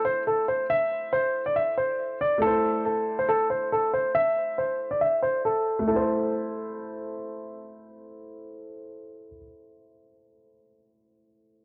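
A dark concert grand piano, mellow with deep bass and short sustain, carries an up-front filtered melody with analog delay until 7.1 seconds, over a boxy, intimate baby grand accompaniment whose audible action noise persists to 11.6 seconds, in this menacing, tense half-time hip hop excerpt at 139 BPM in A minor, with a filter sweep through the opening 5.9 seconds and a gritty, dry sound touched by light small-room reverb.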